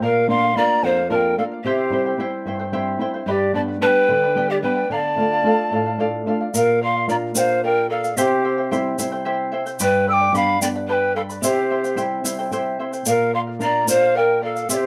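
Set in a small room with a moderate reverb, this earthy, melancholic Andean folk piece moves in a straight 6/8 at 74 BPM, cycling through Bb, C, G and Dm. Breathy cane pan pipes carry the melody up front with vibrato and a soft chiff, while a bright, airy wooden quena adds a second line and a shimmering fingerpicked charango and a dark, boxy thumb-plucked flamenco guitar accompany. A grainy tube shaker joins at 6.5 seconds, and the nylon-string guitar slips in a brief fill at 12.2 seconds.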